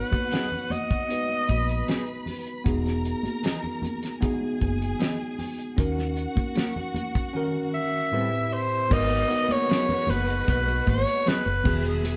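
A straight 4/4 groove at 77 BPM in G# minor sets a cinematic, bittersweet mood in this lush 1970s-style soul passage, cut from a longer piece. A damped, up-front drum kit with a fat snare, tight kick and dark cymbals anchors the beat alongside a round, foam-muted fingered electric bass, while high-tuned congas played with soft hands ring in the background. A worn, slightly out-of-tune tine electric piano carries the chords, a mellow electric guitar plays a clean fingered riff, and a rich studio string section bowed with vibrato adds a focused second line. The raspy, gritty alto saxophone leads the melody, sounding briefly at the opening, falling silent at 2.3 seconds and returning at 7.7 seconds with a punchy, roomy pop-style tone. Light reverb gives the band the feel of playing live in one room as the harmony moves through G#m7, Emaj7, D#m7 and Am7 before circling back.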